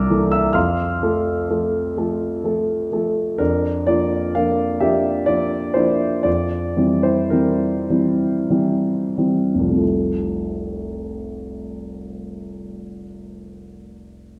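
This is a romantic classical character piece for solo piano in F major, hopeful and warm in mood, cut from a longer work. Moving in 3/4 with rubato phrasing, it sits between 44 and 65 BPM and gradually slows from 2.0 to 9.8 seconds. The grand piano alone carries everything, ranging from F1 up to F6 with a smooth, vintage tone placed up front in the mix. The harmony opens on a C13 before settling onto F, then moves through Bb/F and C7/F over an F in the bass, returning home to F at 9.8 seconds. A wet recital hall reverb gives the piano a soft bloom, and the production leans dark and warm.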